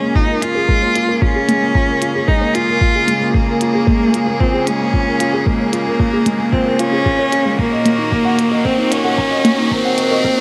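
Piano and strings electronica with a melancholic, intimate mood, this build-up excerpt sets a clear, smoothly vibrato cello melody up front over a felt-muted upright piano riff that sounds soft and dark. Beneath them, a rich, earthy chamber string section holds sustained chords with sidechain pumping and a low-pass filter, while a very quiet, warbling, lo-fi pluck adds detuned, chorused arpeggios. A muffled, thumpy, pitched-down kick sits up front with clicky electronic hi-hats, and a background riser enters at 4.5 s as the harmony moves from Bbm7 to Ebm/Bb at 7.6 s, all in light reverb and small room ambience.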